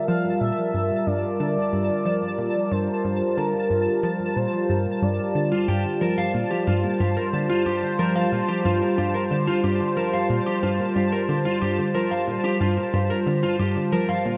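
A tight, driving sequenced sawtooth riff with a filter pluck pulses at a straight 91 BPM in 4/4 under this mysterious, expansive piece of ambient space music in G minor, cut from a longer work, where a detuned, bright, evolving resonant pad holds a Gm7 chord, a pulsing tempo-synced gated texture hovers high on A5 with its own reverb, a smooth, expressive lead with vibrato and tape echo sings until 6.3 seconds, and from 5.5 seconds a dark, slightly broken-up fingered electric guitar plays echoing arpeggios, all bathed in a long plate reverb within a dark production.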